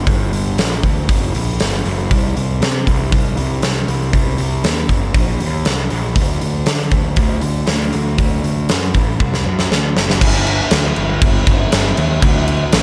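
A straight 4/4 pulse at 118 BPM drives this heavy, menacing hard rock excerpt, cut from a longer piece. A huge arena drum kit sets the beat almost from the start, its punchy kick, fat snare, hi-hat and crash cymbal sounding acoustic and big-roomed while sitting up front. Beneath it, a warm fuzz picked electric bass, direct and amped with overdrive, grinds through the low register from F#1 to D3, also placed up front. A drum fill from 9.2 to 10.2 seconds ushers in a new passage that carries on until the close at 12.8 seconds. The overall recording is dry, with little reverb, giving the pair a raw, confrontational weight.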